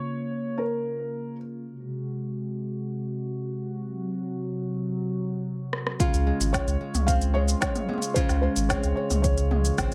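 An excerpt of pastoral folktronica in Db major at 111 BPM opens with a smooth, warbling analog pad under a filter sweep and a muted, boxy felt piano melody, then a drum fill at 5.7 seconds brings in a woody-snared organic electronic kit, a deep kick, a round sine sub bass and fingerpicked nylon-string guitar arpeggios with audible finger squeak, while the piano returns at 6.5 seconds over the Dbmaj7 chord that arrives at 6.0 seconds.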